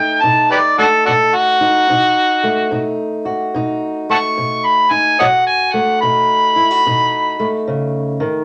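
Blues at a slow, swung 72 BPM with a gritty, laid-back mood, this short excerpt cut from a longer piece features an up-front amplified harmonica soloing jazz-style with overdriven grit, light vibrato, tongue slaps and scooped notes until 7.6 seconds, over a fingerpicked old ladder-braced acoustic guitar whose dark, woody, boxy tone and old strings sit beneath on a B7 chord, all in a moderate studio reverb.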